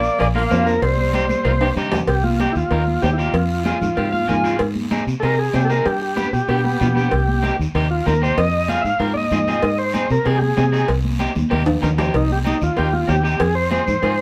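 A live-room sound with wet studio reverb frames this fiery, danceable cumbia in C minor at 191 BPM, where a reedy, heavily vibrato-laden vintage combo organ takes an up-front solo from 2.1 to 12.1 seconds over a round, foam-muted fingered electric bass, a slightly broken-up picked electric guitar with a clean fill at 4.0 seconds, raspy guiro, bright high-tuned congas in the background, ringing cowbell and timbales, drum fills, and a bright tenor saxophone heard only in the first 1.7 seconds.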